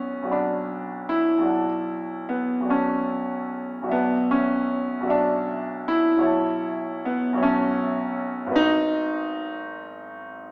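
A hazy, nocturnal stretch of impressionist solo piano opens on a B minor chord with an added ninth, cut from a longer piece and running about 10.5 seconds. The concert grand sounds clear and open, with a deep bass reaching down to G#1 and a top near B5, and it sits up front in its own tone. The tempo drifts around 49-54 beats per minute in a rubato 6/8, giving the phrases a floating, unhurried feel. The harmony glides from Dmaj7 over a B bass at 1.5 seconds to F#m7 over B at 6.3 seconds, then settles on G#m9 at 8.6 seconds. A wet recital hall reverb surrounds the playing, and the overall sound seems heard from further back in the room, with a small-speaker character that adds to the dreamy, late-night atmosphere.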